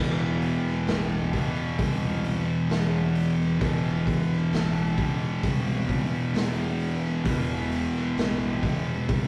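Two dark, picked fuzz guitars, one up front, open an ominous, sludgy stoner and doom metal riff over a growly, overdriven fingered bass sitting in the background, before a raw garage drum kit with a punchy kick, medium-tuned snare, hi-hat and gritty, rolled-off top joins at 0.4 seconds in a bright stone room, all captured as a rough rehearsal-room recording with light reverb in this short cut from a longer piece.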